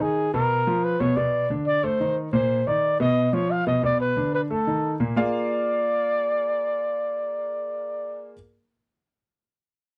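Sophisticated and danceable, this brief jazz excerpt moves at a brisk, straight-feel 4/4 pulse and is cut from a longer piece. A dark, breathy trumpet carries the melody, its soft attack, scooped notes and vibrato giving the line a whispered, intimate quality that sits up front in the mix yet carries a roomy, distant air. Beneath it, a concert grand piano supplies the accompaniment with a natural tone, deep bass and audible action noise, adding to the close, personal feel. The harmony shifts through chords such as Db7/Cb, Bm and suspended Bb voicings before settling on Bb7 as a new section begins at 5.2 seconds. Light reverb colours a dry, close recording with a 1970s studio character.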